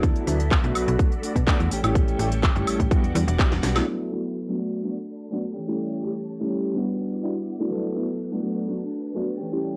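Funky and sunny, this filtered disco house excerpt at 125 BPM in 4/4 sets a warm, boxy concert grand piano with phaser and sidechain pumping over swirling phased string machine chords carrying 12-bit grit in the background, a dark, clean fingered electric guitar riff bathed in spring reverb, and a snappy, metallic FM bass with tube saturation, while a punchy kick and a house kit of cracking snare, crisp hats, handclaps, shaker and woodblock drive the groove with cassette-tape colour until a drum fill at 3.5 seconds, after which the drums and bass stop and filter sweeps carry the piano, strings and guitar through Bm7, A7, Em9 and D69 changes.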